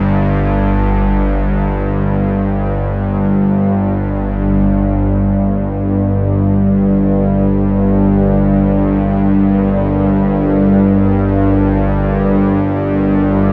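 Dark ambient drone in free time, ominous and vast, heard in a short cut from a longer piece. A string-like, bowed-sounding drone sits up front from the start, low between G1 and G2, its detuned sawtooth unison tense and edged with a noise layer, slow in attack, long in release and touched with vibrato and its own reverb. At 4.8 s a very quiet dark analog pad enters with sustained G minor chords between G3 and Bb4, deep and moody with a sub octave, chorus and phaser. At the same moment a very quiet bubbling texture appears on D5, a detuned, resonant sawtooth stepping through random filter changes, with chorus and reverb of its own. The whole is bathed in a huge, wet ambient reverb with an 8.3-second decay, giving a dark, warm production.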